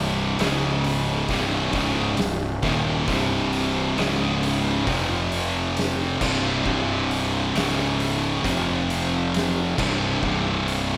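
Sludgy and heavy, this 11-second stretch of stoner and doom metal crawls at 67 BPM in a straight 4/4, its slow riff grinding through Db5, Cm, F5 and C5 chords. An up-front, bright, double-tracked overdriven electric guitar plays the riff together with two dark fuzz guitars sitting in the background, while a growly fuzz fingered electric bass rumbles beneath. An oversized low-tuned acoustic drum kit enters at 0.4 seconds with a fat snare, punchy kick, hi-hat and crash, its saturated, gritty tone rolled off at the top and set in a small room.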